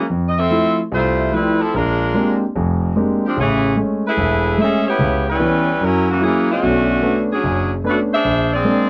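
A clear, up-front saxophone section carries the melody with a light vibrato and a vintage, band-style ensemble sound, ranging from D3 up to E5. Beneath it, a warm concert grand piano supplies the accompaniment, its natural tone reaching down into a deep bass as low as E1 and up to G4. This is an energetic, swinging jazz excerpt in 4/4, cut from a longer piece and running just under 9 seconds, with both parts sounding from the opening moments to the end. The harmony moves through rich extended chords, from Fmaj7 and Bb13 to Amaj7, then through C#m7b5, F#7 and Bm9 before landing on Bb9 at 8.2 seconds. The sound is dry and close, like a 1970s studio session, with just a touch of light reverb.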